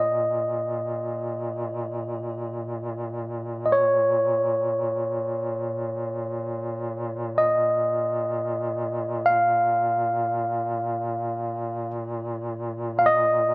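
In free time, this mournful, longing Caucasian folk lament in Bb minor, cut from a longer piece, sets a clean, direct tine electric piano melody up front between Db5 and F5 over a vintage-toned duduk drone on Bb2, played folk style with vibrato and scooped notes, all captured with close, detailed microphones and light reverb.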